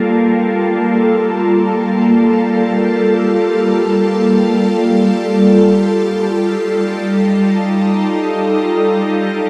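Floating in free time, this peaceful, luminous ambient fragment is carried entirely by a single ethereal synth pad, its detuned sawtooth and triangle layers fading in slowly and sustaining with a long release. Placed up front with a bright, airy edge, the pad is colored by ensemble chorus, phaser and dub echo, all set within a wet spring reverb. Its harmony drifts from Gm9 to F9 at 4.8 seconds before the clip ends at 9.5 seconds, cut from a longer piece.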